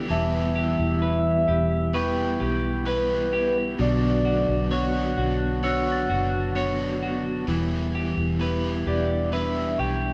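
A rough home-demo mix with moderate studio reverb frames this haunting, hazy dream pop fragment, where a soft octave-layered synth lead sings a round, mellow melody through chorus and digital delay above clean electric guitar arpeggios, a bright overdriven semi-hollow guitar shimmering with tremolo and lush chorus, sustained flute-like tonewheel organ chords spun through a fast rotary speaker, a dark, foam-muted vintage fingered electric bass, and a delicate, bell-like large celesta ringing in the background through plate reverb and delay, over a progression that moves from Em to Bmadd9 and back to Em.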